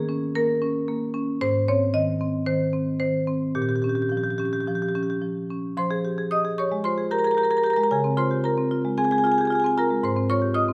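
A solo marimba played with medium hard mallets opens this flowing, hypnotic contemporary classical excerpt in F minor at 113 BPM in a straight 4/4, its woody, dark rosewood tone sitting up front in a moderate recital-hall reverb as it spans Ab2 to Eb6 and moves through chords such as Eb7sus4, Bbm6, Fmadd9 and Dbmaj7 before reaching Ab6 at 10.0 seconds.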